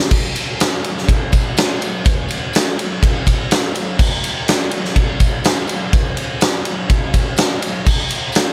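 Brooding and hazy, this short rock fragment at 124 BPM in a straight 4/4 puts a huge, up-front acoustic drum kit in a big natural room, with a fat snare, punchy kick, crash and ride cymbals, while a very quiet, jingly, vintage-toned tambourine with a band-limited sound sits far behind it, all under light reverb, from 0.1 to 8.5 seconds.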